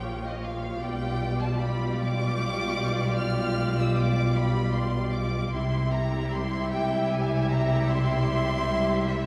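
A focused, distant first violin section carries the melody, its vibrato-laden line spanning Eb5 to F6 in this solemn, elegiac slow romantic movement for string orchestra. Beneath it, an expressive, close second violin section sings a warm second line, while the violas supply rich, even accompaniment. The cellos sit lush in the background with a smooth top, and the double basses add a bowed low foundation marked by portamento, all five sections playing together from 0.0 to 9.3 seconds. The music moves in a rubato 12/8 at 51 BPM, tuned to A4 = 438 Hz, and its harmony passes from Gm7b5 over Bb through G7 over B to a C chord at 5.5 seconds. A wet recital-hall reverb of 1.6 seconds lends the ensemble the resonance of a church or concert hall across this brief passage cut from a longer piece.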